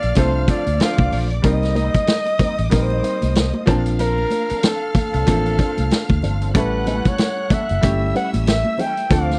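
Smooth and silky, this short cut of lush 1970s-style soul moves at 94 BPM in 4/4 with a swung 16th feel, as a warm, vibrato-rich flugelhorn with slapback echo carries the melody over a bowed string line, a clear baby grand piano, a dark, round muted fingered bass and a gritty, punchy vintage drum kit, while a horn section with octave doubling stabs from 0.2 s within an opening band accent, high-tuned congas sit in the background, and a mellow wah-treated electric guitar riff enters at 1.7 s, captured in a dry, close studio sound over chords moving from Dm7 to A7.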